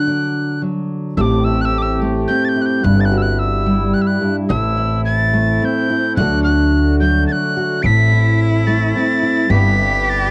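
This short cut from a longer piece has the soft, homespun sound of a cassette home recording in a lightly reverberant room. It is a peaceful acoustic folk tune in a gentle 3/4 at 108 BPM, played by a small band. From 0.0 seconds a fingerpicked steel-string acoustic guitar lays down a dark, up-front accompaniment. An airy tin whistle carries the melody above it, with a crisp chiff on each note, rolled-off highs and a slightly unsteady vibrato. At 1.2 seconds a plucked upright bass arrives with a woody, growly thump, and a mellow brass section adds soft-edged sustained chords beneath the tune as the harmony moves from D through Am7 toward a closing G6. At 7.8 seconds a single bowed cello enters with a clear, biting, somewhat boxy second line sung with vibrato, while the whistle, guitar, brass and cello all carry a faint cassette-tape colouring.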